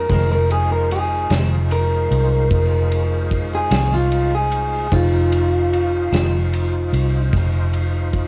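A slightly broken-up, compressed electric guitar through a small old amp carries the melody in this smoky, soulful slow blues fragment in 12/8, over a round, foam-muted fingered bass sitting up front, a lightly overdriven tonewheel organ with chorus vibrato and slow rotary speaker holding sustained chords, a clean picked electric guitar with tremolo, and a vintage kit of punchy kick, medium-tuned snare and dark ride cymbal, while a woody, very quiet upright piano joins at 4.9 s, with cassette tape grain on the guitars, organ and drums and small room ambience giving it a homemade cassette feel.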